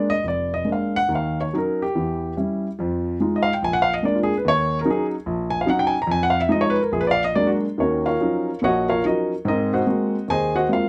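A dark, mellow grand piano plays alone for the full 10.9 seconds of this moody, smoky solo jazz passage cut from a longer piece, sitting up front and intimate with its action noise audible. At 144 BPM in 4/4 with a swung, rubato feel in Eb minor, the harmony moves through chords such as Ebm7, Fm7b5, Bb7b13 and Ebm9 before landing on Ab9. A light reverb leaves the instrument sounding natural and close.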